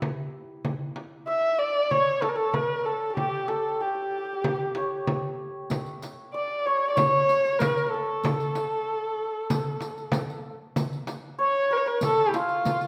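Hypnotic and soulful, this Persian modal ensemble piece moves in a straight, steady four. Hammered santur and a small, close and dry frame drum played with soft hands open together, the santur giving a shimmering, ringing second line to the melody. At 1.3 seconds a single bowed kamancheh enters up front with the lead, its dark, woody voice shaped by vibrato and portamento. A riq with bright jingles, also played with soft hands, joins at 5.7 seconds with a small-room sound. The whole ensemble sits in a wet recital hall reverb, and the passage is cut from a longer piece.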